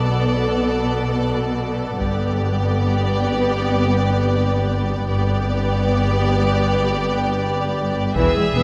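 A bowed double bass section sits up front, its rich, smooth and even tone anchoring this mysterious, ominous suspense cue from a film score, which moves in free time and is cut from a longer piece. A cello section in the background shares the bass line with it, playing with a soft attack and expressive vibrato, while a close, focused viola section carries a lush accompaniment. Above them a distant studio violin section plays a second line, and a chamber violin section carries the melody with a smooth top. A mellow, ethereal ambient pad holds sustained chords in the background, its detuned, granular shimmer coloured by chorus and its own reverb. The harmony moves from Bm7 to G at 2.0 seconds, where a taiko ensemble strikes with hard sticks in a small room until 3.5 seconds and returns at 8.2 seconds, all captured by close, detailed microphones in a lightly reverberant space.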